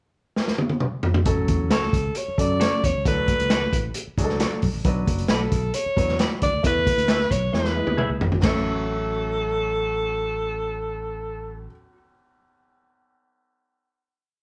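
Uptempo 1960s-style soul in A major at 134 BPM, this short, uplifting piece opens with a drum fill on a vintage kit during the pickup bar before piano and bass arrive at 1.3 seconds. The drums sit up front with a punchy kick, medium-tuned snare and dark, muffled cymbals, driving a backbeat soul groove with another fill leading into the closing A6 chord at 8.4 seconds. A growly fingered electric bass plays a melodic, syncopated line with muted ghost notes, while an intimate upright piano pushes the chords in drop-2 voicings with grace notes and audible, woody action noise. Short, slightly broken-up guitar chops from a small old amp land on the backbeat, and very quiet, damped, high-tuned congas add a bright, syncopated groove. Leading the way, a breathy alto saxophone with vibrato, subtone and scooped notes sings a motif-based melody of call phrases, jazz style, sitting up front over the band. 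Played live in one room with moderate large studio reverb, the performance moves through A6, D, Bm, Esus4 and E before ringing out to 12.0 seconds.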